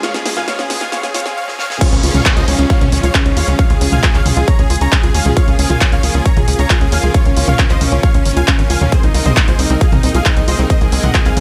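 Uplifting trance at 135 BPM in Db major, soaring and bright, where a short build-up with drum fills from a big-room kit with a huge snare, crash, claps, hi-hat and toms drops at 1.8 seconds as a punchy, up-front electronic kick arrives and a tight, nasal sawtooth sequencer bass joins at 1.9 seconds, all beneath a thick, detuned supersaw melody with vibrato and digital delay, a chorused unison pad, a background pluck arpeggio with a moving notch, and a very quiet riser and downlifter that ends at 5.4 seconds, with sidechain pumping throughout and digital ambience on top.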